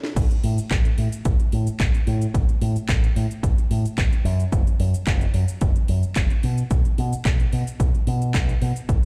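Played back through a big sound system in a bare stone room, this groovy, feel-good nu-disco cut at 110 BPM opens with a house drum fill of cracking snare, metallic hi-hats, handclaps, shaker and crash before the drop at 0.2 seconds brings in a punchy, overdriven electronic kick up front and a bright fingered electric bass with an envelope filter, pumping against the kick and ranging from F#1 to B2 over a lightly swung 16th-note groove.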